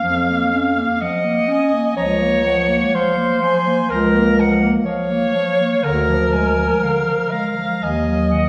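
Heard from further back in a reverberant recital hall, this short cut from a longer classical piece for single-reed quartet carries a melancholic, elegiac mood with a rubato feel in 4/4. A clear soprano saxophone with light vibrato sings the melody from a distance, while the alto saxophone, also with vibrato, sits up front with a second line that sounds louder than the tune above it. Beneath them, a mellow clarinet with a smooth top supplies accompaniment and a present bass clarinet anchors the low end, as the harmony moves from Bbm through Bbm/Db and Bb7/D to Ebm at 7.8 seconds.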